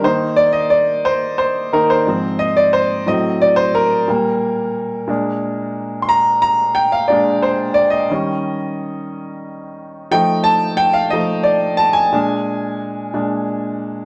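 A clear, up-front grand piano rings through a moderate large-studio reverb in this reverent, hopeful gospel passage, cut from a longer piece and played live in one room. At 60 dotted-quarter beats per minute in a straight 6/8, the solo piano spans from Ab2 up to C6 for the full 14.1 seconds. Its harmony moves from Cm9/Eb through Ab6, Adim7 and Gm/Bb before settling into a run of dominant sevenths, Bb7, Eb7 and F7, returning to Bb7 at 12.1 seconds.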